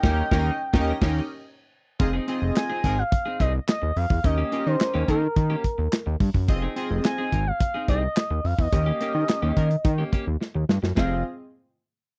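Early-eighties boogie funk with a slick, funky mood, cut from a longer piece and moving in a straight 4/4 between Eb7 and Fm7 chords. The band opens on an accent over the first 2.0 seconds. A fat, saturated analog bass and a punchy modern studio drum kit sit up front; the kit has kick, medium-tuned snare, hi-hat, handclaps and crash. Above them, an expressive portamento lead carries the melody with a smooth, resonant sawtooth tone, vibrato, chorus and a slapback echo, while a glossy chorused polysynth with pulse-width modulation fills in the chords. A clean, twangy electric guitar plays a riff bathed in lush chorus, and a clear horn section in octave doubling adds a brief second line from 2.0 to 3.0 seconds. A drum fill at 10.4 seconds leads into the closing bars, and the dry, close 1970s-style studio sound keeps the mix intimate.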